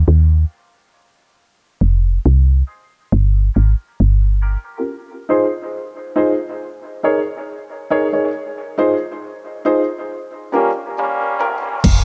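A heavy, spacious dub reggae excerpt in F minor at 69 BPM opens with dark upright piano stabs, mellow and slightly detuned with audible action noise, soaked in dub echo and a filter sweep, over a woody, round FM bass that drops out at 4.6 seconds. The piano carries the break over chords moving between Fm7, Eb7sus4 and Gm7b5, and a clear, punchy trombone section with light vibrato adds an echoed second line from 10.5 seconds. At 11.8 seconds the piano and horns stop as the bass returns alongside a gritty breakbeat kit hitting a thumpy kick and a crash, set in a lightly reverberant, echo-heavy mix.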